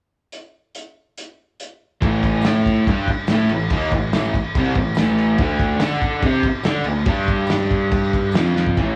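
Garage rock with a rowdy, raw mood, this short excerpt moves at 142 BPM in a straight 4/4 and carries the character of a band playing live in one room, captured to cassette tape and set in a moderate large studio reverb. A cloth-damped, thuddy drum kit opens alone at 0.3 seconds, muffled and dark in its cymbals, with a fat snare, tight kick and a gritty vintage sampler crunch up front. At 2.0 seconds a bright, double-tracked overdriven guitar crashes in with a picked riff over power chords moving from A5 through D5 and G5 to F5, joined by a growly fuzz bass sitting in the background. A jingly tambourine adds a very faint shimmer from 2.4 seconds, and the drums close out the passage with a fill at 8.6 seconds.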